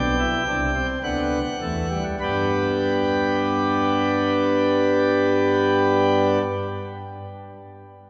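A cathedral reverb with a long 4.5-second decay and a dark top end surrounds this joyful, lively excerpt of a baroque-style three-part fugue in G major and 3/4 at 50-55 BPM, played by a solo pipe organ on a full, up-front principal chorus with baroque voicing spanning B1 to G5, which slows over its opening 2.2 seconds as the harmony moves from D7sus4 through D to a G chord at 2.2 seconds.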